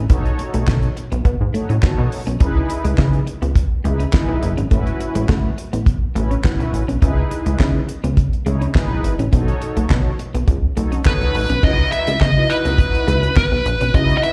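Early-eighties boogie funk at 104 BPM with a late-night, funky mood, heard as a live gig through a club PA, where a dry, fat-snared 70s drum kit with handclaps and a punchy, plucky analog bass drive chords like B7, C#m9 and A6 under round, detuned synth brass and a clean hollow-body guitar riff tucked in the background, until a nasal, overdriven lead guitar with a parked wah takes the melody from 11.1 seconds.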